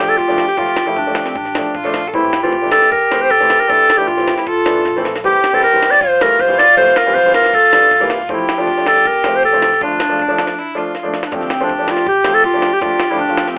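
A mellow clarinet leads this bittersweet yet festive klezmer piece in D minor, playing a solo melody in a classical style, up front in the mix. A soft-attack violin adds a second line, its pure, floating sul tasto tone sounding rich but distant, while a warm, polished upright piano provides present accompaniment and a pizzicato upright bass with steel strings plucks woody notes in the background. A gritty, compressed, pitched-up sampler-style drum kit drives the 4/4 beat at 157 BPM with a thumpy kick and a medium-tuned snare, and the tempo speeds up throughout. The chords move from Dm through Am, C7 and F before returning to Dm, with drum fills at 4.9 seconds and 10.9 seconds, and a short break just before the opening section repeats at 11.3 seconds. The whole piece carries a telephone-like sound inside a small, moderately reverberant room, and it is cut from a longer piece.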